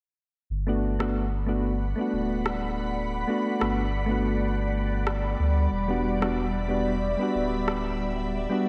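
A lightly swung 4/4 groove ticks along on a layered electronic rim click set in studio reverb, giving this wistful sunset chillout fragment an easy, unhurried sway. A deep, round sub bass with tube saturation sits up front from 0.5 s, joined by soft, warbling electric-piano-like synth keys with a vintage glow from chorus and digital delay. At 1.6 s an ethereal, detuned pad fades in slowly, its airy chords shimmering through ensemble chorus, phaser and built-in reverb as the harmony moves from Gmaj7 to Em7 at 5.7 s, all bathed in a lush hall and a bright 1980s-style digital sheen.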